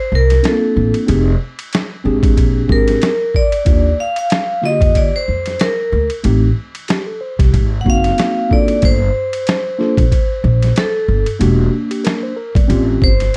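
Smooth and warm, this short cut from a longer jazz-hop piece rides a relaxed 93 BPM groove in 4/4 with a gentle 16th-note swing, centered in Bb major and tuned slightly below standard pitch. A vibraphone struck with hard mallets carries the melody from the first moment, its metallic, ringing tone shimmering with a slow motor vibrato in a boxy small room, placed up front. Beneath it, a pizzicato upright bass with gut strings sounds woody and thumpy, sitting forward and a touch louder than the other parts, while a mellow tine electric piano fills in clean, direct chords from 0.4 seconds. The boom bap sampler-style kit enters at 0.3 seconds with a gritty, pitched-down, compressed character, a thumpy kick and medium-tuned snare alongside hi-hat and ride, re-recorded in a small room for a tape-warm feel. The harmony moves through lush jazz colors, from Bbmaj9 and Ebmaj9 through Am7b5 and Gm9 to a tense A7alt at 12.7 seconds, all within a dark production touched by light reverb.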